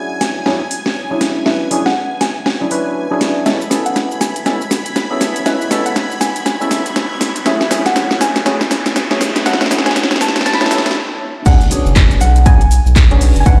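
A swung 120 BPM deep house groove in B dorian builds through late-night, warm chords as a soft, round pluck melody, hollow percussive organ stabs with lush chorus and tape echo, and shimmering string-machine violins play through filter sweeps with a house kit of cracking snare and metallic hats plus a background riser, then after a stop at 11.0 seconds the drop lands at 11.5 seconds with a punchy kick, a deep, nasal analog bass with tube saturation, a very quiet vintage kit and an impact, all set in stone-room reverb as if played on a big system in a bare room.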